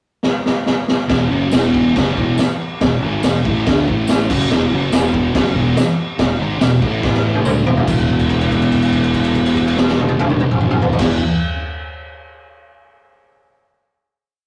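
Raw and rowdy, this short garage rock piece in E mixolydian charges along at 142 BPM in a straight 4/4, opening with a drum fill from the high-tuned snare, boomy kick and toms of a gritty, up-front kit before a thick, double-tracked fuzz guitar power-chord riff and a growly, overdriven fingered bass doubling that riff in driving eighth notes crash in together at 1.1 seconds, a jingly tambourine sits in the background until 8.1 seconds, and after a second drum fill the band lands on a final chord held from 7.9 seconds, all captured in a rough, saturated rehearsal-room sound with a small-room reverb.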